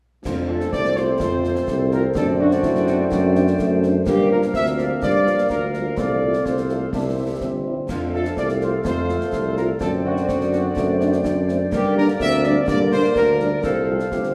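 Proud and festive, this is a military-style march for wind band in F major, moving at 126 BPM in a straight 2/4. The clear trumpet section carries the melody with light vibrato and a close-miked presence. A woodwind section with a tight section sound and a very quiet euphonium with a smooth top both play second lines, while the French horn section, distant and very quiet, adds accompaniment from 0.5 seconds. Dark trombones sit in the background holding sustained chords, and a warm, up-front tuba anchors the bass under an acoustic snare drum, clash cymbals and concert bass drum. The harmony runs from F through D7/F#, Gm7 and C before returning through F and Gm to a Csus4 at 13.6 seconds, and a 1.5-second recital hall reverb with a faint mains hum surrounds this brief cut from a longer piece.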